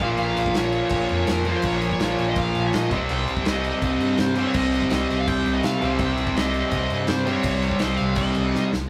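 A rough rehearsal-room recording with tube saturation and a moderate studio reverb gives this short punk rock excerpt an angry, raw edge, pushed along at 165 BPM in a straight 4/4 and tuned to A4 = 438 Hz. Three rhythm guitars play riffs together: a warm, crunchy overdriven guitar, a tight, distorted guitar that sits up front, and a very quiet, double-tracked distorted electric guitar. Above them, a smooth overdriven lead guitar carries the melody with a bright tone. Underneath, an overdriven picked electric bass sounds growly and punchy. A loose indie drum kit, recorded in a small, pumping room, drives the piece with a tight kick, a medium-tuned snare and crash cymbal, closing with a drum fill at 8.6 seconds. The harmony moves from Bbm to Cm at 2.9 seconds, and all the parts play together from the start, with the guitars stopping at 8.7 seconds, the drums at 8.8 seconds and the bass at the cut near 8.9 seconds.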